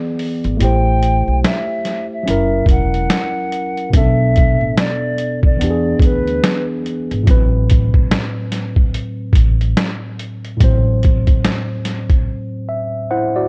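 A swung lo-fi hip hop groove in 4/4 opens this melancholic, reflective clip from a longer piece, carried by a compressed, pitched-down sampler-style drum kit with a thumpy kick, medium-tuned snare and hi-hat, muffled and up front as if re-recorded in a small room. The kick drops out briefly from 0.6 seconds, leaving hi-hat and snare before it returns. Beneath it, a woody, dark upright bass plays pizzicato on steel strings, low and thumpy. A worn, slightly out-of-tune tine electric piano comps through jazzy seventh chords with a clean, direct tone, softened by cassette tape and a low-pass filter, and gets a short fill to itself when the beat breaks at 12.3 seconds. Over the first half, a close-miked, hollow concert flute sings a pure, tongued line with vibrato, also filtered, before falling silent at 6.7 seconds. The whole track sits dry and intimate, with a cassette haze.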